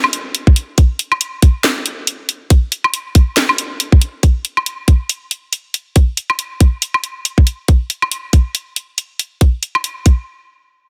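A garage drum kit opens this dark, cavernous dubstep excerpt, its handclaps, hi-hat, cracking snare and woodblock sounding layered and up front. An electronic kick drum joins at 0.5 seconds, tight and layered, sitting at the very front of the mix. The groove moves in a half-time feel in 4/4, with a noticeable shuffle from the swung sixteenths giving the percussion a loose, rolling lilt. The piece shifts into a new section at 4.2 seconds, and both drum parts carry on together before everything drops out in a stop at 10.3 seconds. The sound is dry and close, with a dense, heavily limited modern master.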